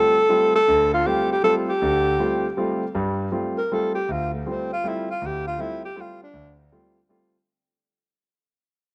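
A breathy, whispered alto saxophone leads this cool, intense jazz fragment in a swinging 3/4, its subtone and light vibrato sitting up front and intimate before it moves into a solo at 2.9 seconds and drops out at 6.6 seconds. A concert grand piano accompanies over a G9sus4 chord with deep bass and audible action noise, carrying on until 7.4 seconds as the music fades. Both parts have a cassette-tape character, set in a lush hall reverb that gives this home recording a roomy glow.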